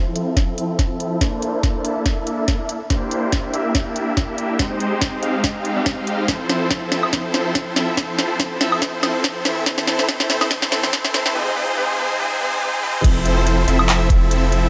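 Lush, detuned supersaw chords open this bright, euphoric future bass clip at 142 BPM in F major, their sawtooth unison sound pumping with sidechain and passing through a low-pass filter sweep and tape echo as the harmony moves from Fmaj7 through Bbmaj9#11, C9 and Abmaj7. A trap drum kit enters just after, sharp snare, crisp hats, handclaps, woodblock and crash cymbal placed up front with studio reverb, joined by a layered, knocking electronic kick with a tape-warm edge. The half-time feel carries a light 16th-note swing, and a drum fill runs under the build-up until 11.4 seconds while the filter sweep continues toward the drop. At 13.0 seconds the drop lands on Fmaj7 and a deep, saturated sine sub bass arrives on F1, thick and sustained with its own sidechain pumping. The mix sits in light reverb with a high-pass filter, and the clip, cut from a longer piece, ends shortly after the drop arrives.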